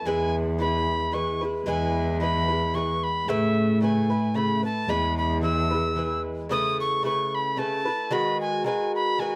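A tin whistle and an Irish bouzouki open this lively, cheerful Celtic waltz together, joined almost at once by a bowed cello. The piece moves in 3/4 at 112 BPM with a gentle swing on the eighths, in E major and tuned slightly low at A4 = 435 Hz. The tin whistle carries the melody up front with a pure, metallic tone, crisp chiff on each attack and a touch of vibrato. The picked bouzouki supplies warm, metallic, double-strung accompaniment. The single cello adds an intimate, soft-edged bass played sul tasto with light vibrato. The harmony moves between E and Aadd9 in the opening section, and the cello drops out at 6.2 seconds, just before a second section begins at 6.5 seconds and turns toward B6. Light reverb rounds out this brief cut from a longer piece.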